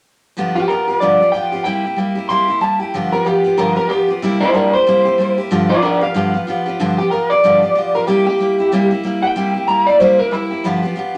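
A wet studio reverb surrounds this upbeat, rollicking swung rock fragment, where a twangy, slightly broken-up electric guitar through a small old amp enters at 0.6 seconds to carry the melody up front over a full-bodied, fresh-stringed steel-string acoustic guitar picking the accompaniment with audible finger squeak from 0.4 seconds, the pair moving between G7 and C7 until the acoustic stops at 11.2 seconds.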